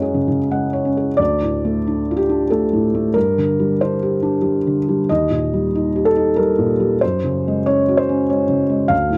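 Neoclassical minimalist piano in 3/4 at 93 BPM with a rubato feel, this wistful, melancholic fragment cut from a longer piece features a solo felt-muted upright piano, thick-felted, intimate and up front, ranging from D2 to F#5 and moving through F#sus2, Dm, Gsus4 and Eb before returning to F#sus2 at 7.0 seconds, captured by close, detailed microphones in light reverb.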